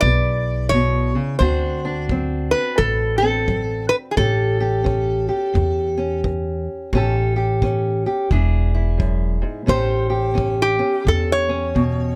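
Laid-back and gritty, this short piece of acoustic country blues rolls along with a swung feel in 4/4. A lap resonator guitar carries the melody up front, its slide tone metallic and nasal as it is played with fingerpicks. A dark, boxy parlour guitar is fingerpicked beneath it, while a pizzicato upright bass strung with steel adds a woody growl, both sitting close in the mix. A tight kick drum played with brushes stays in the background, heard in a small, natural-sounding room. The harmony moves through E7, D7 and A7, and at 9.7 s the resonator guitar takes a steel-bar solo over an A7 chord. Close, detailed microphones and little reverb give the recording an intimate, dry presence.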